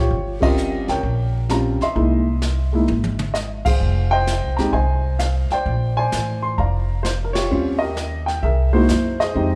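Swinging in 4/4, this relaxed, sophisticated jazz piano trio passage, cut from a longer piece, sets a warm, natural-sounding baby grand up front on the melody over a woody pizzicato upright bass on steel strings and a brushed kit with dark cymbals and a boomy kick, the band striking accents at 0.3, 3.6 and 7.3 seconds around a brief drum fill, inside a moderate recital-hall reverb as the harmony moves through Eb13, C7alt, Fm7 and Bb13.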